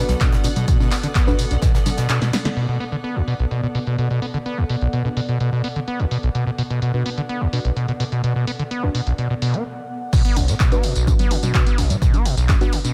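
Acid house at 127 BPM in B minor, hypnotic and gritty, built on a squelchy, distorted acid bass riff with cassette-tape grit and sidechain pumping, deep mellow chord stabs carrying chorus, phaser and tape echo in the background, a cloudy granular pad that stops at 9.7 seconds, a punchy analog drum machine with congas, handclaps and tambourine, a very quiet tight funk kit, and a dry, punchy electronic kick that drops out between 1.7 and 10.1 seconds before returning after a brief stop.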